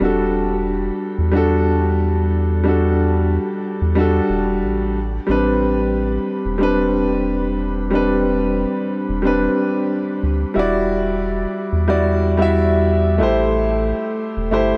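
A concert grand piano and a round analog bass open this wistful, smooth sunset chillout piece together, moving at 91 BPM in 4/4 in E minor with a light swing on the sixteenths. The piano carries the accompaniment between G3 and E5, its open, up-front tone with deep bass and long sustain colored by tape echo and shimmer reverb. Beneath it, the bass holds the low end from E1 to E2 with a dark, nasal, sine-like sound, fast in attack and sustained. The harmony drifts from Em11 to Am11, then shifts at 10.6 seconds into a new passage on Em9 before settling on Am7. A moderate, lush hall reverb gives the whole a spacious finish, and this short cut from a longer piece closes near 14.8 seconds.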